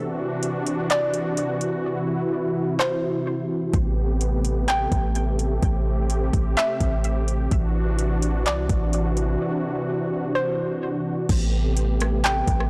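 A deep, boomy 808-style bass with transformer saturation arrives at 3.7 seconds beneath a detuned sawtooth analog pad with chorus and sidechain pumping, an overdriven smooth R&B drum kit of soft kick, metallic hi-hats, handclaps, rim click and crash cymbal, and a soft, round pluck melody run through chorus, low-pass filter and delay, in this spacious, ethereal atmospheric cloud-rap excerpt at 127 BPM with a half-time feel in A dorian, moving over D9 and Am9 chords with a blown-out, overdriven sound and light reverb after an opening break in which the hi-hats drop out from 1.8 to 3.7 seconds.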